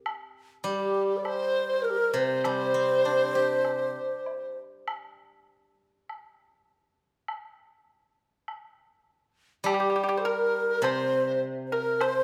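Chinese traditional chamber music, graceful and tender, moves at a rubato 101 BPM in 4/4 in a recital hall with moderate reverb. A breathy, end-blown xiao carries the melody with vibrato and an unsteady tone. A hollow, mellow large dizi with a buzzing membrane sounds distant beside it, while a silvery, ringing steel-string zither sits up front in accompaniment over a woodblock with a small-room sound. The woodblock plays alone from 4.6 s until the ensemble comes back, and a dry, percussive pipa joins the second line at 9.7 s in this short section cut from a longer piece.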